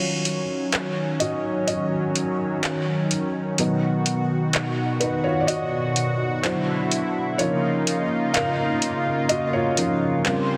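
A soft, intimate felt-muted upright piano takes the lead over a thick, detuned sawtooth pad with chorus from the first moment, and at 0.3 s a booming, dry analog drum machine with metallic hi-hats and handclaps joins this moody, longing contemporary R&B fragment at 63 BPM, which drifts through Ebm7, Badd9, Cmaj9#11 and Db69 in a lush hall reverb under a dense, heavily limited modern master.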